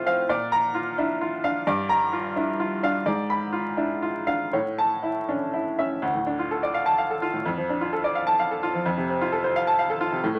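In a rubato 6/8 lilt at 86 BPM counted in dotted quarters, this stormy, agitated classical piano study in D minor is a 10.4-second cut from a longer piece, played by a solo baby grand ranging from D2 up to C6. The piano sounds brilliant, worn and natural, sitting up front with a short sustain in a moderate studio reverb, while vinyl crackle runs beneath. Its harmony moves from Bb through Gm7 and G#dim7 to A, then restates the opening material over Dm, Dm/F and F from 6.0 seconds.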